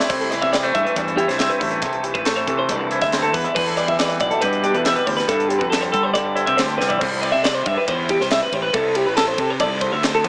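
An echo-heavy mix with a small-speaker sound and a moderate echo-chamber reverb frames this restless, intricate slice of math rock and midwest emo at 139 BPM in straight 4/4, tuned to A4 = 445 Hz. Up front, a bright, compressed twelve-string electric guitar plays clean, picked arpeggios through analog delay. Beneath it sit a clean, fingered, twangy electric guitar accompaniment that drops out at 8.7 seconds, a round, overdriven fuzz bass, and a crisp fusion drum kit with bright cymbals, a high-tuned snare and a punchy kick, also run through analog delay; the chords move from C6 through Em7 and G7sus4, and a drum fill at 6.8 seconds leads back to C6 as a new section begins at 7.0 seconds.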